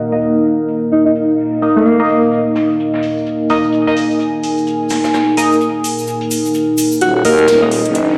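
A breathy alto saxophone sits up front in this bouncy, aggressive bass house excerpt at 128 BPM, its mellow, scooped phrases carrying light vibrato and a touch of delay from 0.9 to 2.4 seconds before returning briefly near the end. Beneath it, a dark, detuned analog pad holds sustained chords with chorus and phaser, joined by a warbling, lo-fi tape-like pad that adds a nostalgic, vintage haze. A nasal, band-passed chord stab cuts through with bright, decaying hits under a filter sweep, colored by phaser, chorus and delay. The groove swings on the 16ths, built from a metallic electronic hi-hat layered with a brushed jazz kit of hats and a medium-tuned snare, while a grainy egg shaker rattles in the background. At 7.0 seconds the music shifts into a build-up where a thick, growling FM bass with tube saturation enters, and a riser creeps in at 7.6 seconds, all set in a small-room ambience with large reverb.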